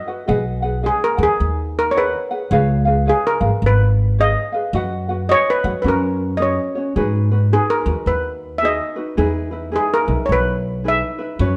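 A light reverb gives a sunny, languid air to this short Hawaiian excerpt at 108 BPM in 4/4 with a swung eighth-note feel, where a shimmering, metallic double-seconds steel pan struck with hard rubber sticks carries the melody up front, a thumb-plucked acoustic ukulele plucks a light, warm accompaniment, and a woody, growly pizzicato upright bass on steel strings enters at 0.3 seconds beneath chords moving from G#m7/B through C#7, B/F#, F# and G#m7 to Emaj7.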